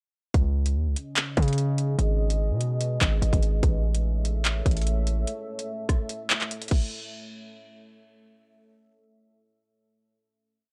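This is a short, complete drill hip hop piece at 146 BPM in a half-time 4/4 feel, tense and cold in mood. The drill drum kit comes in at 0.3 seconds, electronic and up front, with a hard-clipped kick, metallic hats skipping through fast hi-hat rolls, handclaps, rim clicks and a crash cymbal, all roughened by vintage 12-bit sampler grit and a tape-warm edge. A hard-hitting 808-style bass starts with the drums, punchy and heavy, its sine tone topped with a noise layer, holding long sub-bass notes that follow the kick and bend with pitch slides. From 1.0 seconds a deep, dark ambient pad of detuned sawtooth unison over a sine sub octave swells in slowly, warbling and moody under chorus and built-in reverb as the chords move from C#sus2 to G#m to A. The kick drops out from 6.1 seconds, and after the verse ends a final hit closes the piece at 6.9 seconds. The overall sound is dry and gritty, like a hardware recording with little reverb.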